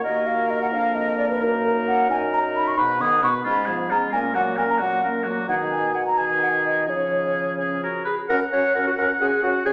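A wet recital-hall reverb surrounds this short cut from a longer piece, a quick, urgent, stormy classical-period movement for wind quintet in F# major. It moves at 88 beats per minute, counted in dotted quarters, in a straight 6/8. The airy, close-miked concert flute carries the tongued, expressive melody in a straight tone. Just beneath it, an up-front oboe with a clear, lightly vibrant, vintage tone plays the second line. The French horn, with a gentle vibrato, and the warm clarinet fill in the accompaniment, while a mellow bassoon with light vibrato holds the bass. All five parts play through to the end, and the harmony settles on an open F# chord when a new section begins at 8.3 seconds.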